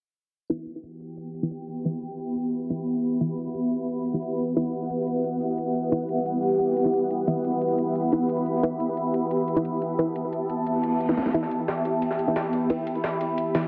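Dark technical drum and bass at 177 BPM in E minor, this mechanical, dark excerpt rests on a single Em chord, with a deep, detuned analog pad with chorus and a muted, filter-swept dub chord stab run through phaser and delay, both up front, while an electronic, layered drum kit with a cracking snare drives the groove on hi-hat and snare. A blurred, cloudy granular pad with its own reverb drifts in at 1.3 s, and an electronic reverse cymbal sits in the background from 10.8 s before a drum fill at 11.1 s. At 11.3 s a gritty, pitched-up jungle sampler-style kit with a high-tuned snare and high-pass-filtered ride joins, the whole mix soaked in wet digital room reverb and squeezed into a heavily compressed, low-passed radio sound.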